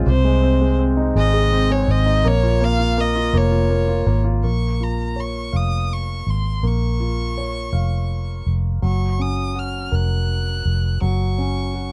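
Dry and close, with a light touch of reverb, this short cut from a longer six-eight pop ballad has the intimate, up-front sound of a 1970s studio. It moves slowly at 55 BPM in 6/8 with a straight feel, in B-flat minor and tuned slightly under standard pitch at A4 = 439 Hz, carrying a melancholic, aching mood. A concert grand piano supplies the accompaniment, its tone warm and polished, with deep bass, long sustain and the noise of its action audible. Underneath sits a vintage electric bass, played with the fingers and foam-muted, whose round, dark, amped tone is placed up front in the mix. From 0.1 s a single bowed violin sings the melody high in its range, rich in tone, smooth and even, with vibrato. The harmony moves from Ab/C to Bbm7 before a new passage opens at 4.4 s on B-flat minor, shifting to G-flat at 8.8 s.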